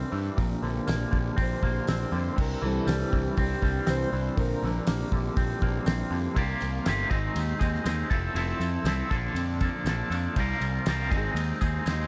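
Kaleidoscopic and trippy, this psychedelic rock excerpt at 120 BPM sets a twangy, picked envelope-filter guitar riff with tremolo and tape echo against a fuzzy, overdriven picked bass, a damped, dry 70s drum kit with a fat snare entering at 0.4 seconds, a jingly tambourine echoing in the background, a mellow vintage combo organ holding chords that take a solo through the first 6.4 seconds, and a reedy, breathing pedal harmonium drone that stops at 6.4 seconds, all moving through chords from Bbadd9 and C to C7sus4, Ab, Fmaj7 and Bbmaj7 in an echo-heavy mix.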